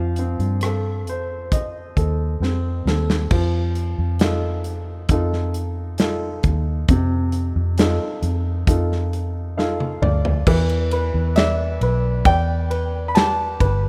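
An up-front studio drum kit with a punchy kick carries this tender, hopeful pop ballad at 67 BPM in a straight 4/4, with bright cymbals, a medium-tuned snare and fills that break through the groove, the first at 2.4 seconds. Over it, a polished concert grand piano sings a brief melody at the opening and returns near the end at 11.4 seconds, its tone present with deep bass. A second grand piano holds the accompaniment throughout, intimate and natural with audible action noise and short sustain. It adds its own fill leading into the closing passage at 10.5 seconds, where the harmony moves from the opening F7 to Em7. Beneath them, a vintage, foam-muted fingered electric bass sits dark and round, and the whole excerpt has the rough feel of a home demo mix with light studio reverb, tuned to A4 = 435 Hz.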